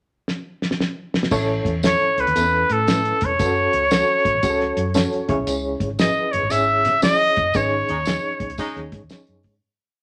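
Wet studio reverb gives this short, complete piece of uptempo 1960s-style soul a glossy room around its urgent, passionate energy, moving at 116 BPM in a swung 4/4. A cloth-damped, thuddy drum kit opens with a fill at 0.3 seconds, its fat snare, tight kick and dark cymbals sitting up front in a dry, rolled-off backbeat soul groove. At 1.3 seconds the band arrives: a reedy, worn and slightly out-of-tune electric piano plays close-voiced quarter-note chords with grace notes through its built-in speakers, shimmering with fast tremolo, while a vintage, foam-muted fingered electric bass adds a round, syncopated line with slides, and a jingly tambourine marks every beat in the background. A clear trumpet carries the song-like, motif-based melody up front with vibrato and a smooth top, moving over A, F#m and C#m chords. From 7.5 seconds the harmony settles on G#sus4 as the band hits accents and the music fades out, with a clear saxophone section adding brief pop-style punches at the phrase ends.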